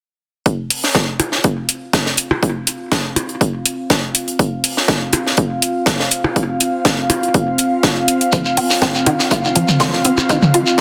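A dense, heavily limited modern mix sits in a moderate lush hall reverb with a small room around it, giving this cool, sparse minimal techno excerpt at 122 BPM in a straight 4/4 a polished sheen. A punchy analog-style electronic kick and a crisp fusion kit with a high-tuned snare and hi-hat start at 0.5 seconds, joined by up-front metallic electronic hats that were re-recorded in a small room. An airy, breathy pad between C4 and F5 fades in across the whole passage, its chorus and sidechain pumping adding soft motion beneath the beat. Tape-warm electronic blips and toms run through a digital delay from 1.2 seconds. At 8.3 seconds a squelchy, resonant blip pluck riff, juicy and bright with ring modulation, phaser, ensemble chorus, cassette tape colour and delay, arrives alongside a grainy, mellow shekere.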